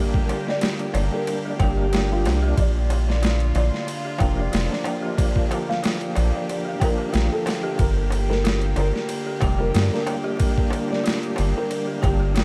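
A swung boom bap groove at 92 BPM anchors this brooding, dark trip hop fragment in G minor, its gritty sampler-style kit up front with a thumpy kick, medium-tuned snare and ride cymbal, overdriven and re-recorded in a small room, while a very quiet, crisp metal-shell darbuka joins at 0.2 seconds. Beneath it, an overdriven tonewheel organ with percussive second-harmonic attack, chorus vibrato, slow rotary speaker, tremolo and tape echo holds the accompaniment alongside sustained, floating chords from a dark chamber string section. A felt-muted upright piano carries the melody from 0.5 seconds, intimate and mellow with audible action noise, colored by analog chorus and dub echo. A round analog bass enters at 0.9 seconds, deep and nasal with a fast attack, sitting prominently in the mix as the harmony moves from Gm to Bb. In the background, an eerie, inharmonic detuned FM bell spins arpeggios through chorus, tremolo and tape echo, and the whole dreamy mix is soaked in a huge ambient reverb with a 4.7-second tail and a bed of vinyl crackle.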